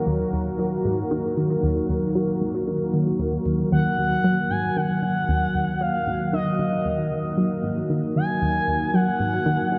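An expressive portamento lead enters in the foreground at 3.7 seconds, its smooth sawtooth tone gliding between high notes with vibrato, treated with chorus and analog delay. This is ambient, sequencer-driven space music in Eb minor at 115 BPM in a straight 4/4, with an expansive, hypnotic mood that rests on a single Ebm chord. Beneath it, a tight sequenced synth drives a low riff from the opening moment, its detuned sawtooth and triangle blend shaped by a fast filter pluck and colored with chorus, phaser and analog delay. A sweeping resonant pad sits up front with sustained chords, its evolving detuned sawtooth and square waves thickened by a sub octave and opened by a slow filter swell under chorus. Everything is bathed in a cathedral reverb with a 5.7-second decay that places the parts in a vast, echoing space, and the passage is cut from a longer piece.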